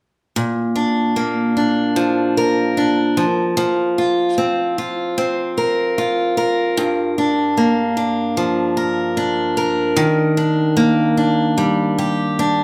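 Set in a wet, large studio reverb with a live-in-one-room feel, this short pop piece is cut from a longer performance and features a single picked steel-string acoustic guitar heard up front. The guitar plays accompaniment from 0.4 to 12.6 seconds with a concert-style acoustic tone, moving through Bb, Fsus4, Gm7 and Ebmaj7 at a sunny, easy-going pace.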